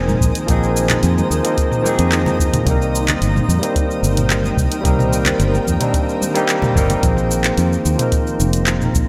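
A barky, lightly overdriven tine electric piano with delay opens this smooth sunset chillout excerpt at 110 BPM, over a shimmering, ethereal pad with chorus, a dark, round fingered bass, and a twinkling granular texture sparkling in the background, as the harmony moves from Bb9sus4 to Cm7 and back. A produced R&B kit with handclaps, hi-hat, shaker and toms, very quiet, close and dry congas, and a tape-warm electronic kick arrive almost at once. The congas and the granular texture stop at 7.0 seconds, leaving the rest to carry on under a lush hall reverb.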